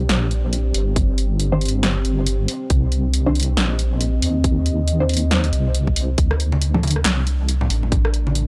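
A half-time 138 BPM groove with swung 16ths drives this meditative, dark deep dubstep excerpt in Cm(add9): a tight, up-front electronic kick and a punchy, overdriven house kit of snare, handclaps, hi-hat and rim click sit over a deep, detuned sawtooth wobble bass with chorus. A moody, slow-attack ambient pad sustains alongside muted, filter-swept dub chord stabs soaked in phaser and dub echo, and thick-skinned, low-tuned congas join at 6.5 s, shortly after the harmony moves to D5, on a dry, gritty hardware recording with transformer saturation.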